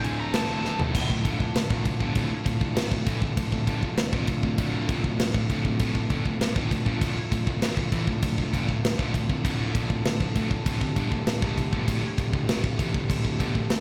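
Heavy metal in D minor at 99 BPM, this aggressive, heavy passage is cut from a longer piece and moves in a straight 4/4. A distorted, high-gain lead guitar sounds a brief melody at the very start, falling silent by 0.8 s, while a drum fill from 0.6 s leads into the main section. Three riffing guitars run throughout: a very quiet, double-tracked fuzz guitar, a heavy high-gain guitar, and a scooped high-gain guitar, the last two bright and sitting in the background. Beneath them, a growly, overdriven fuzz bass holds the low end, and a pipe organ with sparkling flute stops adds light, romantically voiced sustained chords. The acoustic drum kit is up front, with a tight kick, a medium-tuned snare, toms and crash cymbal. The whole mix has a rough rehearsal-room character with tube saturation and a moderate cathedral reverb.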